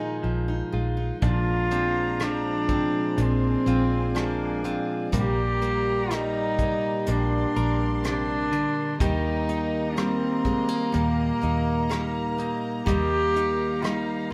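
Melancholic and reflective, this acoustic folk-pop ballad moves at a slow 62 BPM in a straight 4/4, cut from a longer piece. A bowed solo cello carries the melody up front, its nasal, reedy gut-string tone shaded with light vibrato in a period style, while a clean, compressed electric guitar recorded direct and a picked steel-string acoustic guitar, set in the background, supply accompaniment and arpeggios. A dark, round, foam-muted fingered electric bass enters at 0.2 seconds, and at 1.2 seconds a mellow, distant French horn adds a classical second line as an intimate chamber string section, bowed sul tasto, holds sustained chords above. A soft brush drum kit arrives at the same moment, sounding roomy and far off with a punchy kick, hi-hat and rim click. The harmony drifts from Bb7sus4 through Bbadd9 and Gm/Bb to Eb, all bathed in a moderate large studio reverb.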